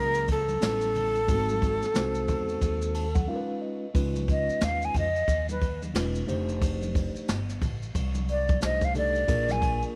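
A breathy, hollow jazz flute carries the melody up front with vibrato and a soft attack over mellow, clean tine electric piano chords and a woody pizzicato upright bass in this cool jazz-hop groove with a swung 16th feel, while a brushed drum kit with dark cymbals and a boomy kick joins in, backed by vintage, band-limited maracas and congas in the background; the electric piano plays a fill at 2.6 seconds, a short break arrives at 3.3 seconds, and the flute opens into a solo from 3.9 seconds, all in a dry sound.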